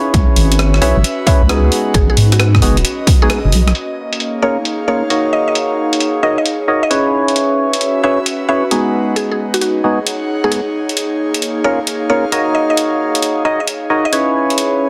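Dense, heavily limited and bathed in wet reverb, this soulful, late-night two-step UK garage excerpt at 133 BPM, swung on the sixteenths in Bb phrygian, sets a hollow, organ-like percussive stab with lush chorus and dub echo against an airy, breathy pad pumping under sidechain, while a deep, dark wobble bass with tube saturation and a punchy, overdriven electronic kick drive the opening until the kick stops at 3.2 s and the bass at 3.7 s, after which a filter sweep runs on the stab as gritty, sampler-style hi-hats and rim clicks and a woody, mallet-like FM pluck with dub echo carry the minor-seventh chords onward.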